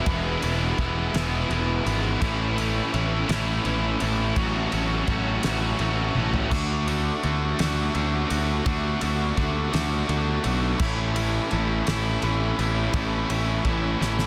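A fuzzed, overdriven electric bass sits up front in this wistful, jangly indie rock passage, punchy and warm as it anchors the low end at 56 BPM in a straight 6/8. Beside it, a bright, compressed overdriven guitar picks out a riff, while a second, biting overdriven guitar with an ensemble chorus adds its own riff further back until it drops out at 6.5 seconds. A loose acoustic drum kit in a pumping studio room brings a fat snare, punchy kick and dark cymbals across crash, ride and toms, with fills leading into the second pass of the section and again near 14.0 seconds. Very softly beneath it all, a clean tonewheel organ holds sustained chords through a slow rotary speaker. The harmony moves through Eadd9, Aadd9 and F#m7/A before settling on Dadd9 and Aadd9, all wrapped in light reverb and a dense, heavily limited modern master, in a fragment cut from a longer piece.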